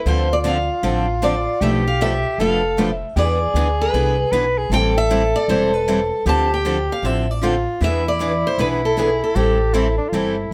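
Acoustic string swing in the jazz manouche tradition, fiery and virtuosic at 155 BPM in A minor, moving through a minor-key cycle from Dm7 to E7 and resolving on Am7 in this short cut from a longer piece. A bright, boxy picked steel-string guitar carries the melody up front with finger squeak and plate reverb, while a soprano saxophone with light vibrato and a soft subtone plays a second line beneath it. Two more picked steel-string guitars supply accompaniment, one a bright concert guitar with finger squeak and the other boxy and set in the background, over a woody, thumpy pizzicato upright bass on gut strings, all in a moderate studio room.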